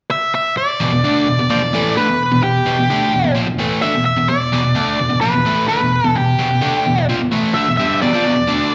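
Brooding and gritty, this short rock excerpt moves in a straight 4/4 feel, captured live at a club gig and heard through the venue's PA with light, roomy reverb. An octave-fuzz lead guitar opens at 0.1 seconds, its dark, fuzzed tone carrying the melody up front with distortion and a slapback echo. At 0.8 seconds an overdriven electric guitar joins on the riff, its picked, double-tracked sound compressed and warm, sitting up front and low in register beneath the lead. That entrance coincides with the shift from an unaccompanied opening to an E minor chord, which holds through to the end. The two guitars carry on together until the cut at 8.7 seconds, the slapback echo on each adding a rough, doubled edge to the raw live sound.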